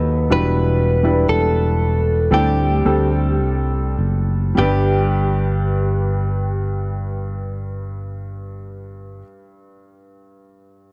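Heartfelt and emotional, this short cut from a longer pop ballad moves at a slow, straight 4/4 pace, easing back in tempo over its first 4.6 seconds. A clean, direct-recorded electric guitar carries the melody in a narrow upper range, its picked, compressed tone colored by analog chorus and a slapback echo. Beneath it, a woody, polished upright piano sits up front with the accompaniment and is the last part sounding, holding on until 10.9 seconds after guitar and bass stop at 9.2 seconds. A growly, amped fretless electric bass sustains deep low notes with a subtle chorus and stands out as the loudest part. The harmony moves from Em7 to D7sus4 before settling on G as the second section begins, all captured in a dry, close studio sound with a 1970s character and little reverb.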